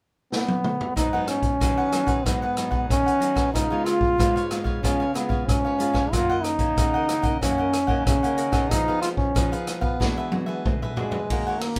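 Samba and choro at 93 BPM in 4/4, this bittersweet yet lively excerpt, cut from a longer piece, features a clear, close-miked trombone carrying the jazz-style solo melody with vibrato and a soft attack, over a roomy big-band drum kit with a punchy kick and rolled-off top that opens with a fill and returns to another from 10.0 to 11.3 seconds. From 1.0 seconds a crisp, picked cavaquinho and a full-bodied, fingerpicked classical nylon-string guitar with fresh strings and audible finger squeak join, moving through Abm7, Db7, Gb6 and Fm7b5 before landing on E9. A moderate studio ambience surrounds the ensemble.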